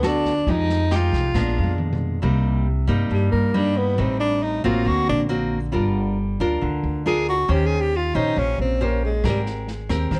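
Smooth and melancholic, this bossa nova in C minor moves at 137 BPM in straight 4/4, with a close-miked, breathy tenor saxophone carrying the melody with vibrato and stretching into a solo from 2.2 seconds over a bright, fingerpicked nylon-string guitar with audible finger squeak, a woody, growly pizzicato upright bass, and a dark, boomy small-room jazz kit that plays a fill, drops out at 2.0 seconds and returns at 9.2 seconds, all under light reverb and the warbling pitch drift of worn cassette tape.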